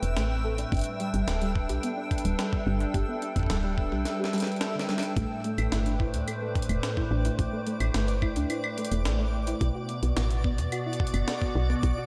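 A straight 4/4 pulse at 108 BPM drives this eerie, intricate IDM fragment, with a jungle-style sampled kit of claves, hi-hat and a medium-tuned snare, all pitched up, compressed and gritty and trailed by delay, joined at 0.7 s by a thumpy electronic kick. A drum fill around 4.1 seconds briefly breaks the groove before the harmony settles back from Gadd9 onto Am7. Up front sits a woody FM bass with a mellow, quickly decaying tone, while a hollow, flute-like pad holds sustained chords beneath a shimmering ensemble chorus. A dark, full-bodied pluck spins gentle arpeggios through subtle chorus and analog delay, and a twinkling granular texture adds a bright octave-up sparkle in its own reverb. The whole mix floats in a lush hall reverb, giving the short passage a dreamy, suspended feel as it turns toward Bm near the end.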